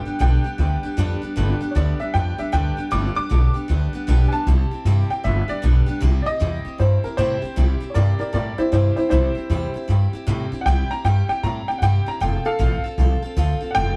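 A dark, slightly detuned upright piano opens this rowdy, retro rockabilly excerpt at 155 BPM in a swung 4/4, carrying the melody in C major alongside a bright, full-bodied picked steel-string acoustic guitar and a thumpy, woody upright bass on gut strings. The piano sits up front with a mellow, worn character, long sustain and audible action noise that gives it an intimate feel. The pizzicato bass is the loudest part and also sits up front, while the guitar picks its accompaniment further back. The harmony moves from G to C and back before a shift at 6.0 seconds, where the piano takes a solo through to the end, with the chords moving from C to F at 12.2 seconds. Light reverb gives the sense of a band playing live together in one room, and the passage is cut from a longer piece.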